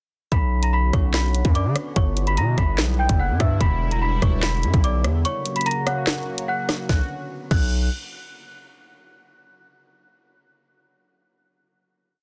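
A worn, slightly out-of-tune celesta plays a looping, octave-doubled melody from 0.3 seconds at 146 BPM in half-time B harmonic minor, over a sweeping resonant chorus-tinged pad, a distorted, aggressive 808-style bass with long sliding sub notes following the hard-clipped kick, and an up-front drill kit of sharp clap-layered snare, rim clicks, crashes and skipping bright hats with fast rolls, moving through Bmadd9, G6, Em7 and F# to a break at 5.2 seconds before settling on a final Bmadd9 chord at 6.9 seconds in a dense, dry, menacing, heavily limited mix.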